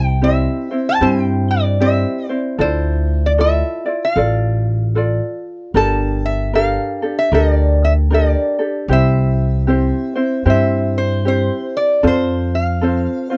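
A metallic, nasal lap resonator guitar carries the melody with slide and fingerpicks, sitting up front in this sunny, dreamy Hawaiian fragment at 76 BPM with a swung eighth-note feel. A mellow, thumb-plucked ukulele and a woody, growly pizzicato upright bass on steel strings fill out the accompaniment through chords moving from C to Dmadd9, Gmadd9, back to C and on to F. The dry, close sound has the intimate feel of a 1970s studio, with every instrument heard nearby.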